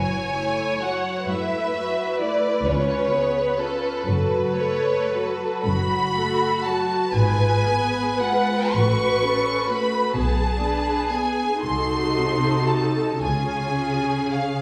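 A slow romantic classical movement for string orchestra, this short excerpt moves in a rubato 6/8 at roughly 35-44 BPM, counted in dotted quarters, with a warm, tender mood that settles into F# minor from 5.7 s. The first violins carry the melody between A4 and C#6 with vibrato and a smooth, even tone that sits up front, while the second violins trace a soft-attacked, expressive second line beneath them. Violas fill in the accompaniment with a rich, lush sound, and the cellos lend a dark bass with portamento and a smooth top alongside the double basses, whose expressive low register stops at 14.3 s, just before the others finish at 14.6 s. The harmony wanders through diminished chords such as Fdim/Ab and Cdim7 before coming to rest on C# at 13.2 s. A recital hall reverb with a 1.7-second decay wraps the ensemble in the resonance of a church or concert hall.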